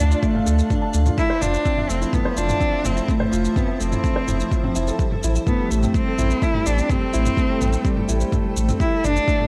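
Light reverb and a digital ambience frame this melancholic, moving piano and strings electronica excerpt, where an up-front dark cello sings an expressive, bowed melody with vibrato and portamento over a soft, boxy felt-muted upright piano riff with audible action noise, a blurred granular cloud pad and a round sine sub bass that both pump with sidechain, a deep electronic kick drum and layered electronic shaker and toms, as the chords move from Dm through Fmaj7 and Am7 to Gadd9.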